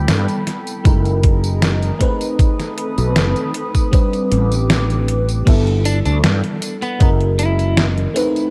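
A soft, digitally ambient haze with light reverb frames this short vaporwave excerpt, its woozy, dreamy mood carried at an unhurried straight pulse. An FM electric piano layered with a soft pad supplies the accompaniment, its lush, mellow tone shimmering through phaser, chorus and tape echo, while a warbling, nostalgic tape-like pad holds sustained chords until 5.5 seconds. Up front, a growly, punchy fretless electric bass anchors the harmony with tube saturation and ensemble chorus, joined by a thumpy, sampler-style electronic kick drum from 0.9 seconds. A detuned 8-bit digital drum machine adds crash cymbal, hi-hat, a medium-tuned snare and tambourine, all wrapped in gated reverb. Late in the passage, at 5.9 seconds, a lightly driven, slightly broken-up lead guitar enters with a brief picked melody trailed by tape echo, floating over rich extended chords such as G69, F#13 and B7b9.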